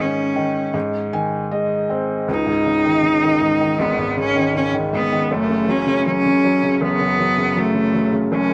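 This melancholic, emotional pop piece moves at 80 BPM in a straight 4/4, tuned slightly high to A4 = 441 Hz, and is cut from a longer work. A single bowed cello carries the melody with a bright, biting, intense tone and vibrato, sitting up front across its A3 to D#4 range. Beneath it, a felt-muted upright piano supplies soft, mellow, intimate accompaniment from F#1 to G#5. Its thin felt and audible action noise give it a close, hushed character, and it plays a fill from 0.7 to 2.3 seconds. The harmony moves from G#sus4 to G#, then to C#sus2 as the second section begins at 2.3 seconds, and on to F#5. A moderate plate reverb and the worn, warbling pitch drift of old cassette tape colour the recording.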